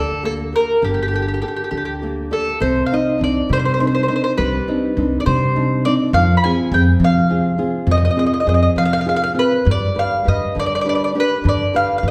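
A lilting 6/8 sways at 68 beats per minute, counted in dotted quarters with a straight feel, in this romantic, wistful Italian folk serenade in C harmonic minor, tuned to A4 = 437 Hz. Up front, a mellow picked mandolin carries the melody on its doubled strings, ranging from G4 to B5. Beneath it, a small, warm fingerpicked nylon-string guitar supplies the accompaniment, while a dark, woody pizzicato upright bass on steel strings holds the low end. All three acoustic instruments play throughout the brief 12.1-second passage, which is cut from a longer piece and moves from Gmadd9 to Cmadd9 at 2.6 seconds, then through Fm to a closing G. A wet recital hall reverb places the listener further back in the room, lending the serenade a spacious, intimate glow.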